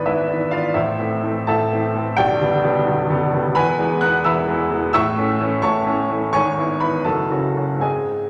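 A wet recital hall reverb, with a 1.6-second decay, surrounds a clear baby grand piano placed up front, its open tone and long sustain ringing into the space. This is a stormy, passionate classical virtuoso study for solo piano, cut from a longer piece and lasting about 8.3 seconds. The music moves in 6/8 metre, shaped with a free rubato feel that lets the phrases stretch and press forward. The piano spans from a deep B0 in the bass up to F#6, giving the passage a dramatic reach across the keyboard. The harmony travels from E7/G# into Am, then through G/B, E, A and E/G# before reaching F#m at 7.1 seconds.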